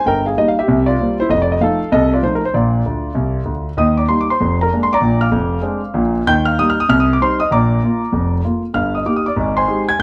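Lightly reverberant and intimate, this swinging, exuberant excerpt of solo stride jazz piano in Eb major moves at 193 BPM in 4/4 with a swung eighth-note feel, its up-front, warm concert grand revealing audible action noise and deep bass across two passages on the same opening theme, with a brief fill from 2.8 to 3.8 seconds.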